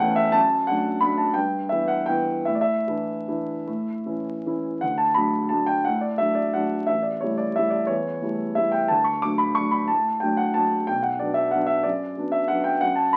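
Elegant and playful, this short classical piano waltz is cut from a longer piece and lasts about 13.2 seconds. A solo grand piano carries it alone in 3/4, its tone dark and mellow and placed up front, ranging from deep bass notes to high treble notes. The pulse moves with a free, rubato feel, giving the dance a lilting grace. After an opening phrase, a new section begins at 4.8 seconds, with harmony drifting between tonic, dominant and a closing turn to the relative minor. The sound has the character of a very old 78 rpm record, with vinyl crackle and moderate studio reverb lending it a faded, nostalgic air.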